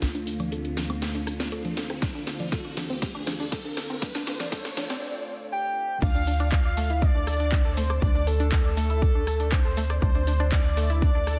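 Emotional and expansive, this progressive house excerpt in D minor moves at 120 BPM in a straight 4/4, opening on a Dm7 build-up that gives way to a drop at 6.0 seconds. A lush, thick unison pad with a warbling, vintage character holds sustained chords under chorus and sidechain pumping, while a tight, detuned sequenced synth runs mellow arpeggios through chorus and tape echo, both carrying filter sweeps through the build. A dark, punchy sequencer bass drives from the start, joined by a house drum kit with a cracking snare and warm hats, a grainy egg shaker in the background, dry analog-toned congas and woodblock, and an electronic riser during a drum fill that runs to 5.0 seconds. A punchy, up-front electronic kick enters at 2.0 seconds. Just before the drop, at 5.5 seconds, a round, octave-layered synth lead takes up the melody with vibrato, chorus and digital delay, and at the drop an intimate chamber violin section, bowed sul tasto, adds a soft second line. 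The master is dense and heavily limited, with light reverb.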